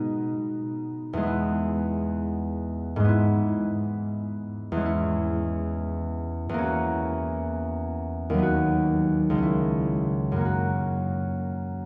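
A fingerpicked concert harp carries this serene classical solo from start to finish, its ringing tone sitting up front and spanning C#2 to F#4. The piece moves in a gentle, rubato 6/8, with the dotted-quarter pulse drifting between 58 and 70 BPM and giving the phrasing an unhurried, breathing quality. The harmony passes from G#m/B through E, E/G# and C#m/E to F#7/E around 6.7 seconds, then settles through B/D# and C#m before arriving on F# at 10.5 seconds. A wet church reverb with a 4.0-second decay surrounds the warm, acoustic instrument, and the sound is softened at the top, holding nothing above 10.7 kHz. This short, peaceful passage is cut from a longer piece and lasts about 11.9 seconds.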